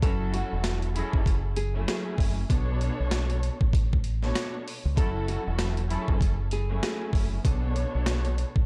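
This short, tough boom-bap hip-hop cut opens with everything at once: an up-front, compressed sampler-style drum kit with a gritty, thumpy kick, a high-tuned snare, rim clicks and swung hi-hats, re-recorded in a large room. Beneath it, a deep dub fingered electric bass sits equally close, round and punchy in its low register. A lush studio string section plays bowed accompaniment with expressive vibrato and portamento, while a full-bodied, fingerpicked nylon-string guitar carries the melody from the background through a tape echo until 7.1 seconds. A distant, roomy horn section adds octave-doubled stabs with light vibrato and its own tape echo, dropping out at 6.2 seconds. The harmony rocks between F#m9 and Bm9, and the dark, warm production keeps reverb to a minimum.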